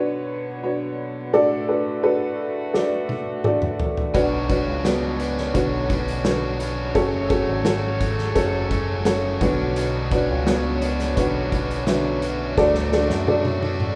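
A dark, woody upright piano with audible action noise and a slightly detuned, worn character sits up front in this dramatic, bittersweet piano-driven pop excerpt, while a muted, nasal French horn section holds sustained chords distantly in the background. A loose indie drum kit with a punchy kick and rolled-off top enters with a fill at 2.7 seconds. At 4.1 seconds a biting overdriven guitar riff arrives alongside picked electric bass shaped by an envelope filter, with the band playing live in one room under a wet large studio reverb as the chords move through Bmadd9, D and F#m.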